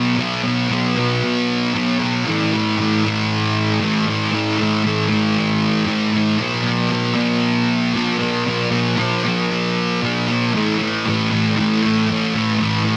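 A dense, heavily limited modern master sets a lone fuzz guitar up front in a light reverb with a digital ambience. This short rock fragment, cut from a longer piece, moves at a straight 116 BPM in 4/4 and carries a blissful yet wistful mood. The electric guitar is picked and double-tracked, its distorted fuzz tone warm, with a subtle chorus adding shimmer as it ranges from A2 to B3. It plays solo from the first moment to the end at 13.0 seconds, voicing power chords that shift between B5 and A5. A brief new section arrives at 10.5 seconds, settling back on A5 before the fragment closes.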